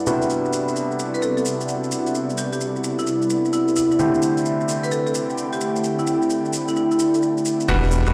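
A swung two-step garage groove at 130 BPM in 4/4 carries this late-night, soulful excerpt from a longer piece, with a house drum kit of crash, metallic hi-hats and shaker sitting low and tape-warm from 0.1 seconds. A soft, silky string machine holds sustained chords through phaser and ensemble chorus, pumping against the sidechain, while a bright baby grand piano with audible action noise and long sustain plays up-front stabs through a low-pass filter over Cmaj9#11 moving to D7sus4 at 4.0 seconds. An ethereal, airy pad drifts in the background with chorus and its own reverb, also pumping. From 1.1 to 7.1 seconds a woody marimba with rosewood bars carries the melody between E4 and B4, trailed by tape echo. At 7.7 seconds a punchy electronic kick and a deep, rumbling detuned saw bass on E1 arrive, the bass dark and beating, all heard through a small wet room and a big, bare-room sound system.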